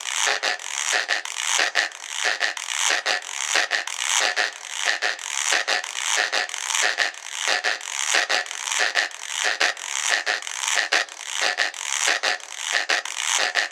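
A lightly reverberant recording puts a raspy, close and dry acoustic guiro up front in this sunny, joyful Latin snippet from a longer piece, which keeps a straight 4/4 feel at 183 BPM from 0.3 s and moves into a new section at 11.1 s before ending at 13.7 s.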